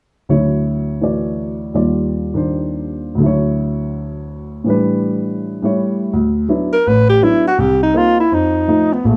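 A dark, mellow baby grand piano opens at 0.3 seconds, comping through Dmaj7, Ebmaj7 and A7sus4 changes in a relaxed, sophisticated jazz swing at 165 BPM in D major. A new passage begins at 6.1 seconds on a D69 chord, and an up-front alto saxophone takes the melody at 6.7 seconds with a breathy subtone and vibrato over Cm7 and F7. Close, detailed microphones and light reverb keep both instruments intimate in this brief cut from a longer piece.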